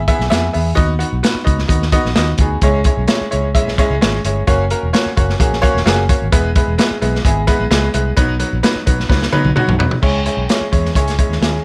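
A straight, driving pulse comes from a gritty, saturated breakbeat drum kit, with its tight kick, snare, hi-hat, dark cymbals and toms sitting up front, and a fill at 9.1 s leading into a new section at 10.0 s. Beneath it, a round, foam-muted vintage electric bass holds down the low end, while a worn, woody upright piano with slightly detuned strings and audible action noise plays bright, present, intimate accompaniment over a cycling E, B, C#m, F# progression. This passionate, uptempo 1960s-style soul fragment carries a light reverb.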